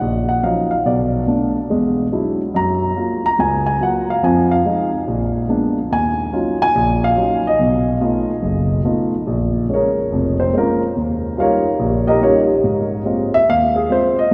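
A dark, mellow concert grand piano plays this cool, smoky solo jazz fragment in Bb minor, sitting up front with deep bass and short sustain. It swings at 143 BPM in 4/4 through lush changes such as Ebm9, Gbmaj7 and Bb7b9, moving into a new passage at 9.3 s that settles on Ab69. A long cathedral reverb surrounds the playing, giving the church or concert hall setting a spacious, lingering glow.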